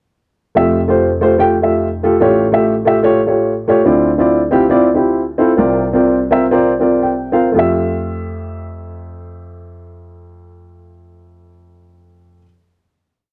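A swung 4/4 gospel groove carries this short, jubilant and uplifting piece, played by a dark upright piano alone with rhythmic chords in drop-2 voicings and brief fills, its woody, mellow tone sitting up front with short sustain. The breakdown slows from 3.9 seconds, a piano fill at 6.8 seconds leads into a final chord held from 7.6 seconds. Everything sounds through a small room and worn, warbling cassette tape with drifting pitch.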